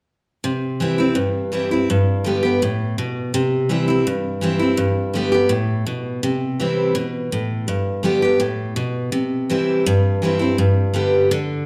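A picked steel-string acoustic guitar carries this short country excerpt alone, its dreadnought tone bright and full-bodied and sitting up front from 0.4 to 11.7 seconds. The mood is heartfelt and sunny, moving at a quick 166 BPM in a straight 4/4 feel in C major. The harmony rocks simply between C and G throughout, ranging from G2 up to G4 on the guitar. Around 6.2 seconds the music passes into a second section, keeping the same two-chord pattern. A moderate recital hall reverb surrounds the playing, and the production leans dark and warm, giving the brightness of the strings a softer setting.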